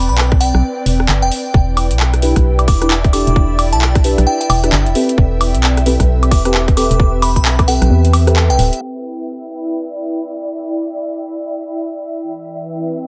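Moody and soulful, this two-step UK garage excerpt swings its sixteenths in 4/4 and is cut from a longer piece. A glassy FM synth bell carries the melody with a crystalline, bright edge, dressed in chorus and delay, while a dark, hollow organ-like FM bass sits up front with a percussive, decaying attack. The garage drum kit brings handclaps, metallic filtered hats, rim clicks and woodblock from 0.2 seconds, underpinned by a tight, layered electronic kick. At 2.2 seconds deep, mellow chord stabs enter, soft and detuned, colored by chorus, phaser and delay, moving through minor-seventh and ninth harmonies. Two pads float beneath throughout: an ethereal one in the background with ensemble chorus, tremolo and sidechain pumping, and a breathy, nasal one with a noise layer that also pumps. After a short break and band accent at 8.4 seconds, the beat drops out and only the two pads remain under a filter sweep until 13.1 seconds, all wrapped in light digital ambience.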